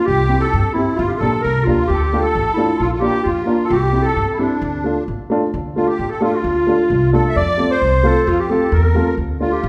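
Klezmer in D minor at 132 BPM in 2/4, soulful and bittersweet, with a warm, distant clarinet leading the melody in classical style over a reedy, shimmering musette accordion second line, an intimate, slightly detuned upright piano with audible action noise, and a dark, thumpy pizzicato upright bass up front, heard in a wet recital-hall reverb as the tune moves into a new section at 5.5 seconds.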